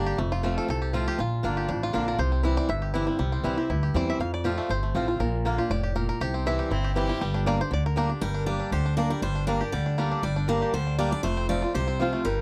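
A fingerpicked five-string banjo opens this excerpt with a twangy, percussive solo over a boxy, swing-style picked acoustic guitar and a woody, thumpy upright bass played pizzicato on gut strings, both sitting up front. The tune is a brisk 239 BPM bluegrass piece in G dorian with a straight four-beat feel, and its mood is haunting and rustic. The chords move through F, Bb and C before settling on G minor. At 6.7 seconds a single fiddle adds a short, clear second line with light vibrato. From 8.2 seconds a bright, full-bodied steel-string dreadnought guitar joins the banjo on the melody, and the harmony returns to F at 11.2 seconds. The sound is a dry, close studio recording in a 1970s style with only light reverb.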